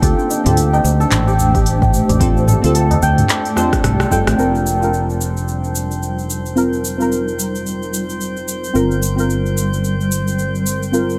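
Meditative organic downtempo at 110 BPM with a swung sixteenth feel, cut from a longer piece, where a dark, detuned chord stab and a cloudy granular pad pump against the beat over a punchy, up-front fretless electric bass, while a shimmering hammered santur plays arpeggios with tape echo until 7.3 seconds, crisp-hatted afro-pop drums with handclaps, rim clicks, shaker and toms sit beside a deep electronic kick and a very quiet high-tuned tabla through a drum fill at 3.6 seconds, and a glassy texture of drifting overtones enters at 5.1 seconds as the chords move from D7sus4 through F9sus4 to Gm7.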